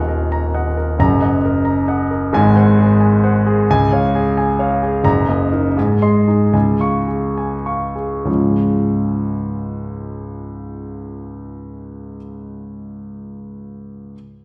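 The recording sits in a wet recital hall with a 1.6-second reverb, heard from further back in the room, and its top end is gently rolled off. Within that space, a warm grand piano plays alone and up front from the first moment to 14.2 seconds, ranging from deep bass to high upper notes. This is a virtuoso classical piano study in 6/8 with a free, rubato feel, and its mood is sparkling and brilliant. The harmony moves through minor colours and a dominant seventh before settling on the home chord, then repeats that path. The pace slows between 4.4 and 8.3 seconds, easing into a contrasting passage that begins at 8.3 seconds, and the clip is cut from a longer piece.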